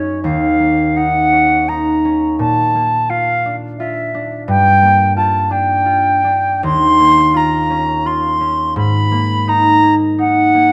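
Close, detailed microphones and a light reverb give this 10.7-second passage, cut from a longer classical piece, an intimate clarity. It is an impressionist duo for flute and harp, luminous and pastoral in mood, moving in a rubato 3/4 at about 85 BPM. The silver concert flute carries the melody from start to finish, sitting up front between C#5 and C6 with a pure metallic tone, a crisp attack and an expressive vibrato. Beneath it, the concert harp accompanies throughout, its fingerpicked acoustic strings ringing warmly across a range from D#2 to E#4. The harmony drifts through D#m9, A#, Gm7, D#sus2 and G#madd9, a dreamy chain of colours typical of the impressionist style.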